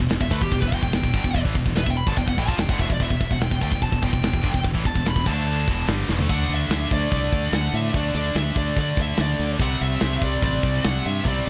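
A tight, up-front metal drum kit and a punchy fingered bass open this heavy, relentless 145 BPM heavy metal excerpt alongside two picked high-gain rhythm guitars, one scooped and set in the background, while a bright distorted lead guitar enters at 0.2 seconds to solo over Em and D5 until a drum fill at 6.1 seconds leads into a second section moving between D5 and C in a small room.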